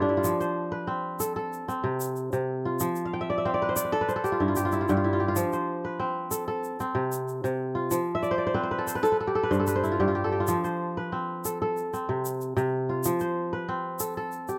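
A ringing, fingerpicked kora opens this flowing, hypnotic West African traditional piece at 94 BPM in F lydian, its crisp, up-front arpeggios spanning low to high registers with fills around 3.0 and 8.2 seconds, while a grainy, close and dry egg shaker enters at 0.2 seconds beneath it in a modest booth ambience, the passage cut from a longer performance.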